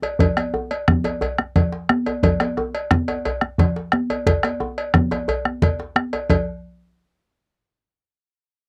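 West African traditional drumming, festive and earthy, moves at 118 BPM in a straight 12/8, taken from a longer piece. The cowbell and a tight, cracking djembe start together at the very top, with the djembe carrying a small-room quality and the cowbell sounding metallic and vintage, its tone band-limited. At 0.2 s a round bombo arrives, sitting close, dry and up front as the heaviest voice in the ensemble. High-tuned congas join at the same moment, ringing and struck with hard hands, also placed close and forward in the mix. The performance shifts into a new section at 6.3 s, and the home cassette recording in a booth gives the ensemble a modest, short ambience.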